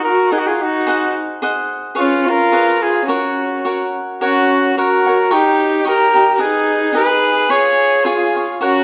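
A recital-hall glow surrounds this romantic, festive mariachi excerpt in swung, rubato 2/4, where a clear, distant classical-style trumpet carries the melody over a dark violin second line with vibrato and portamento and a crisp, picked cavaquinho accompaniment, all three playing throughout its 8.8 seconds as the harmony moves from D#m through G#7 and C#7 to F# before a second section turns to D#7, G#m and C#.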